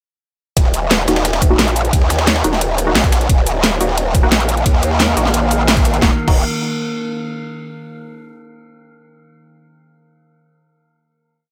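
A growling, detuned bass wobbles up front with changing speed through this short, dark and aggressive piece of technical drum and bass at 176 BPM in Eb minor, driven by a knocking electronic kick, a tight dubstep kit with a huge snare and metallic hats, and a very quiet, gritty looped breakbeat, while muted, echoing chord stabs sit in the background from 1.1 seconds and an eerie, warbling metallic drone enters at 4.1 seconds before a band accent at 5.7 seconds and a final chord from 6.0 seconds.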